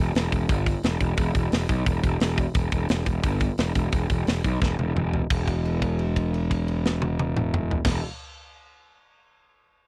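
Aggressive and epic, this short heavy metal cut pairs a growly, fuzz-laden picked electric bass, overdriven and punchy down low, with a tight acoustic drum kit of kick, snare, hi-hat, toms and crash that sounds mid-forward with a rolled-off top, both up front in a dry, close 1970s-style studio sound, as a drum fill at 4.6 seconds leads into a held note from 5.3 seconds.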